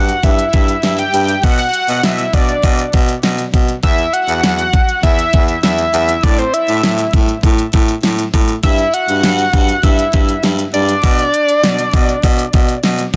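A fat, warbling vintage synth lead with chorus, tape echo, vibrato and a filter sweep carries the melody from the first moment over a raspy, close-miked baritone saxophone bass line, joined at 0.1 seconds by a layered electronic pop drum kit with a knocking kick, snare and crisp hi-hats, forming a cool, melancholic synth-pop fragment at 100 BPM in E minor with a light reverb and a dense, heavily limited modern master.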